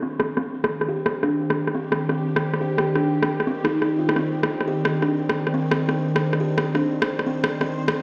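Cinematic and tense, this half-time drum and bass excerpt sits at 174 BPM in C minor, with a swung 16th-note feel hovering over a single Cmadd9 chord. A buzzing kalimba opens at 0.0 s with dark, woody arpeggios between C4 and G4, its thumbnail plucks softened by a low-pass filter, trailed by digital delay and moved by a filter sweep. From 0.2 s a bowed-like drone holds sustained chords from Eb3 to C5, a string-like blend of detuned sawtooth and sine with a noise layer, slow attack, vibrato, long release and its own reverb, placed up front. Also entering at 0.2 s, an electronic rim click drives the drums with overdrive, sounding re-recorded in a small room, with low-pass filtering on the snare, hats and room, and a filter sweep running across the drum part. The whole mix is drenched in a wet echo-chamber reverb and stony ambience, as if played on a big sound system in a bare room.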